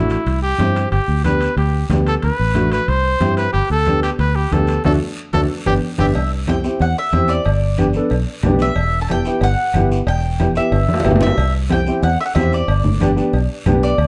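A clear trumpet with vibrato and a smooth top carries the sunny melody up front, bathed in plate reverb, until it drops out at 6.1 seconds. This is a joyful cumbia in 4/4 with a straight feel, cut from a longer piece. A woody upright piano supplies the chords, while a round, foam-muted fingered electric bass sits up front with a dark, amped tone. Low-tuned congas played with soft hands and ringing timbales and cowbell with a vintage, band-limited edge sit in the background, and a raspy guiro joins them to keep the percussion bed going. A band accent and drum fill close the opening half, and a picked mandolin with doubled strings then takes a solo from 6.2 seconds, with a further drum fill along the way. The whole band sits in a moderate large studio room with a warm production.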